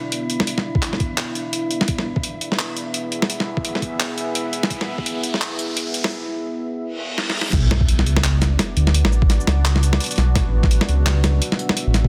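Dark and cinematic, this excerpt of half-time drum and bass at 170 BPM in B dorian opens with a deep, moody pad of sustained chords with chorus, reverb and sidechain pumping, an eerie metallic FM drone in the background until 6.1 s, and a gritty, pitched-down boom bap drum kit with a soft-clipped snare, shaker and handclaps over a thumpy, tape-warm kick. A filter-swept build-up with a background riser and reverse cymbal leads through a drum fill into the drop at 7.5 s, where an impact lands and a rumbling, detuned saw bass enters up front. The dense, heavily limited master carries light reverb.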